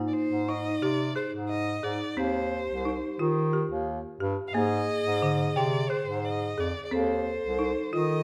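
Vibraphone, folk marimba and bass clarinet open this urgent, restless piece of contemporary chamber music in 7/8 at 177 BPM, with the hard-mallet marimba spinning dry, woody arpeggios alongside a ringing, metallic vibraphone second line with slow motor vibrato, a clear, classical-style bass clarinet holding the low end up front, and a single bowed violin entering at 0.1 s with an expressive melody rich in vibrato and portamento over Ab and Eb harmonies, the ensemble heard in a moderate recital hall reverb.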